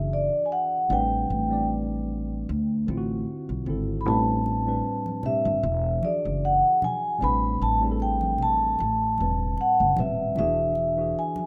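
A rough home-demo mix bathed in lush hall reverb frames this late-night, sultry neo-soul R&B piece at 76 BPM in A dorian, with a gentle sixteenth-note swing. Up front, a soft-mallet vibraphone carries the melody with a ringing, metallic tone and slow motor vibrato, while a worn, slightly out-of-tune tine electric piano supplies the harmony beneath and a woody, thumpy pizzicato upright bass anchors the low end. Thick-skinned congas enter at 4.1 s and sit in the background as the chords move through E9, Am11 and D9.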